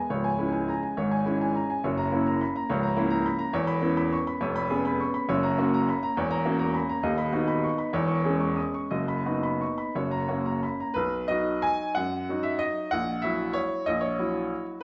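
Lilting in a rubato three-beat waltz pulse, this graceful, sparkling classical excerpt features a solo baby grand piano, played up front with a clear, open tone and long sustain across a broad register. The piano sits in a wet stone room reverb, and the harmony drifts through minor and dominant colours before settling into brighter major chords. At 11.0 s the waltz moves into a new section, which carries on until the fragment ends at 14.8 s.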